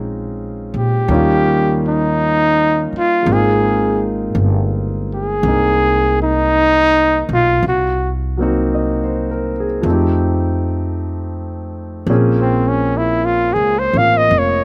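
Swung eighth notes in a slow 4/4 give this wistful, smoky jazz ballad its gentle, lingering pulse. An upright bass plucks a woody, steel-strung line underneath, while a concert grand piano comps with an intimate, vintage tone, deep in the low end, its smooth chords carrying the soft clatter of the action. At 0.8 seconds a trumpet enters and takes the solo, its warm jazz voice colored by a light vibrato and sitting clearly louder than the other two. All three parts sit up front in a dry, open-air sound with very little reverb. The harmony moves from Bbm11 through Eb7 to Ab69, then turns through Cm7b5 and F7 before settling on Bbm7, and the passage is clearly lifted from a longer piece.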